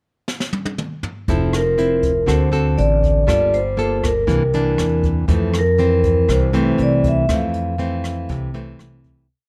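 A soft brushed bossa nova groove at 120 BPM in straight 4/4 opens with a brush fill on the drum kit at 0.3 seconds, its high-tuned snare and boomy kick sitting low and dry in the mix. At 1.3 seconds the rest of the band enters in F major: a woody, growly pizzicato upright bass plays a two-feel root and fifth pattern, and an up-front fingerpicked nylon-string guitar gives classical warmth with thumb bass and syncopated plucked chords through Fmaj7, D7, Gm9 and C9. Over them a smooth, ringing vibraphone with its motor off sings motif-based song phrases in a dark, romantic and sophisticated mood before the short piece fades out from 7.3 seconds.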